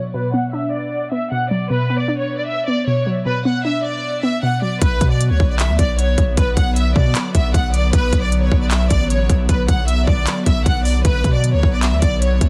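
Trap hip hop in a brooding, melancholic half-time groove, cut from a longer piece, opens with a warbly, dusty pluck under a filter sweep and a distant, lush bowed violin section carrying the melody, then at 4.8 seconds a breathy pad, a deep sine 808 bass and an up-front trap kit with hard-clipped kick, crisp hats, handclaps and gritty 12-bit sampler crunch take over from the pluck, all in a dry, dense, heavily limited mix.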